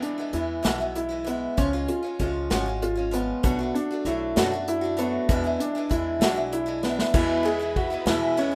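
Indie folk in 6/8 at 65 BPM, this warm, nostalgic excerpt from a longer piece sets a boxy, picked archtop guitar with old strings and a smooth, vintage upright piano playing arpeggios up front, both bathed in plate reverb, over a small-room drum kit played with bundle sticks and dark cymbals and a thumpy, gut-strung pizzicato upright bass, moving through E, C#, Bm7 and E7 before a drum fill at 6.8 seconds ushers in a new section where a vibrato-rich bowed chamber string section enters softly in the background at 7.2 seconds, all captured in a rough home demo mix.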